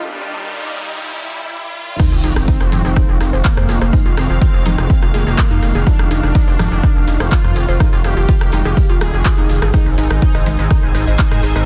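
Dense, heavily limited and nearly dry, this driving, dramatic melodic techno excerpt opens in a short break where a riser and sub drop, a filter sweep, an airy, evolving resonant pad, muted dub chord stabs and mellow, brassy analog synth brass with vibrato and 12-bit grit build toward the drop at 2.0 seconds. There the punchy, up-front electronic kick arrives with a layered techno kit of smooth hi-hats, handclaps, rim clicks and crash cymbal, plus grainy, distant maracas. An impact rings out as the drop begins, and the aggressive, saturated synth bass enters just after, its wave-folded sawtooth tone pumping against the kick. A woody, percussive pluck spins chorused arpeggios through digital delay in the background, while the pad and brass also pump beneath the beat. The harmony rests on Fm7 before shifting to Ab at 9.7 seconds.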